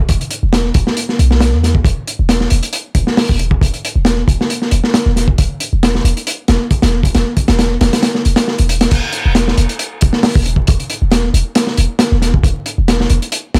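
A crunchy, saturated breakbeat drum kit sits up front, its punchy kick, medium-tuned snare, dark cymbals and hi-hat carrying a gritty, rolled-off character over a swaggering, energetic breakbeat groove at 136 BPM with a light swing on the 16ths. Beneath it, a deep, boomy 808-style bass with a sine body, a noise layer and a fast attack that quickly decays holds down the low end from E1 to E2. The dry sound carries vinyl crackle, and a drop arrives at 8.9 seconds in this short cut from a longer piece.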